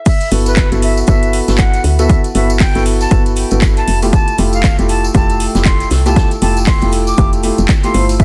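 A punchy, overdriven electronic kick sits up front at 118 BPM in 4/4 with a 16th-note swing, joined by a layered house kit of metallic hats, handclaps and crash re-recorded in a large room, a very quiet brushed acoustic kit with high-tuned snare and shaker, and a jingly vintage tambourine in the background. In this soulful deep house drop in G major, a round, woody FM bass and mellow felt-muted upright piano stabs with audible action noise both pump against the kick, the piano trailing an analog delay over chords moving from Gmaj13 to Fmaj9 at 4.1 seconds. Above them an airy, reedy jazz flute carries the melody with vibrato and its own delay, while a warbling, nostalgic lo-fi pad with chorus and reverb hums behind, all in a dense, heavily limited mix cut from a longer piece.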